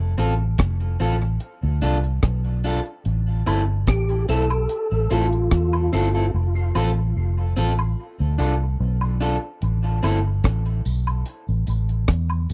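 A straight 4/4 groove at 73 BPM drives this hypnotic, meditative dub reggae excerpt in A minor: a dry reggae drum kit with a tight kick and a dark, round, foam-muted fingered electric bass sit up front, while a slightly broken-up picked electric guitar and close tambourine and woodblock (from 3.5 s) trail dub echo, and a mellow, percussive tonewheel organ with chorus vibrato and fast rotary speaker carries the melody from 3.9 to 6.3 s inside a small, close 1970s-style room marked by lossy compression artefacts.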